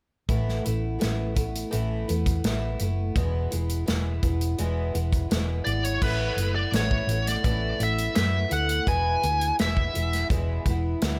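A light reverb gives this short folk rock and heartland rock excerpt a natural studio-room feel, with a nostalgic, hopeful mood at a steady, straight 84 BPM in 4/4. A picked twelve-string acoustic guitar carries the accompaniment throughout, its dark, boxy tone shimmering with octave-doubled strings as the harmony moves between Asus2 and E. Underneath, a hollow-body short-scale electric bass, played with the fingers, sits up front with a round, amped sound in its low register. A natural country drum kit holds the groove with a punchy kick, a medium-tuned snare, hi-hat and crash cymbal. At 5.6 seconds, just before the second section begins, a smooth overdriven lead guitar enters up front with a picked, warm melody in a high register, stopping at 10.3 seconds before the passage closes at 11.2 seconds.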